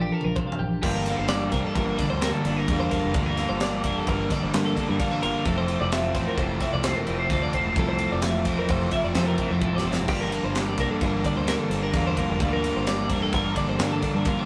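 A drum fill opens this short cut from a longer math rock and midwest emo piece, with two twangy, clean twelve-string electric guitars in spring reverb, one picking a chordal accompaniment and one picking arpeggios, over a punchy fingered bass as a C9sus4 gives way to Gm7 at 0.8 seconds. A double-tracked overdriven guitar riff sits in the background from that point, while the airy, polished fusion kit, up front with its high-tuned snare and punchy kick, drives the straight 5/4 groove at 130 BPM through Fmaj7 and back to Gm7, with a second fill at 9.6 seconds. The mood is wistful yet bright, heard in a rough rehearsal-room recording with light reverb.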